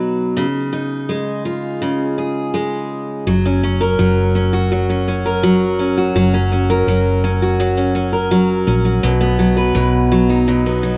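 A moderate plate reverb with a long tail of about 3.2 seconds gives this short acoustic pop passage a spacious sheen. It opens with a bright, full-bodied steel-string acoustic guitar, picked and sitting up front, carrying the accompaniment on its own. The chord is a C#add9 at first, and at 3.3 seconds a hollow-body short-scale electric bass enters, fingered, with a dark, round and punchy amped tone low in the register. The harmony settles onto F# major there and moves to B at 9.0 seconds. At an easy 83 BPM in a straight 4/4, the mood is sunny and carefree, like a fragment lifted from a longer song.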